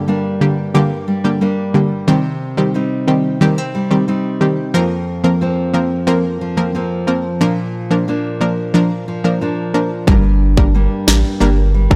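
Tough and hypnotic, this dancehall passage in a straight 4/4 is cut from a longer piece and opens with an analog pluck and a nylon-string guitar sharing the foreground from the first second. The pluck is round and full-bodied, a detuned sawtooth tone with a noise layer and a quick filtered snap, thickened by chorus as it carries the accompaniment. Beside it, the fingerpicked nylon-string guitar plays classical-style arpeggios with the warm tone of fresh strings, moving through Gm, Cm, Fsus4 and Bb. At 10.1 seconds, as the chords return to Gm, a saturated sub bass and an island pop drum kit arrive together up front, the bass deep and thick with a fast attack and sustained notes. The electronic drums bring a tight kick, rim click and a sharp snare pushed through overdrive, all set in a dry, gritty hardware recording with a digital ambience.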